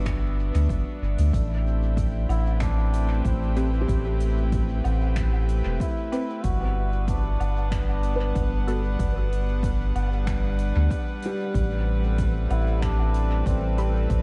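Deep and spacious, this ambient dub excerpt moves at 94 BPM in 4/4 with a light swing on the sixteenths, sitting in A dorian and shifting between Gmaj7 and Am9 chords. A round, soft sub bass sits up front underneath earthy, distant chamber strings holding sustained bowed chords with light vibrato, while a glassy, calm texture of drifting overtones, treated with chorus and its own reverb, glimmers in the background only for the opening 1.3 seconds. From 0.1 seconds an overdriven, punchy electronic kick drum plays in the background alongside a soft-mallet kit of finger snaps, hi-hat and woodblock with a natural, hall-like acoustic tone and dub echo. A nasal, bright trombone with a straight mute carries the classical-style solo melody from 2.3 to 8.6 seconds and returns near the close, its lines trailing dub echo. Muted, detuned sawtooth chord stabs with analog chorus and echo flicker in the background, and from 3.8 seconds a felt-muted upright piano adds intimate, mellow arpeggios. 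The echo-heavy mix is dry of room reverb, dusted with vinyl crackle and rolled off in the highs, and the piece is cut from a longer work.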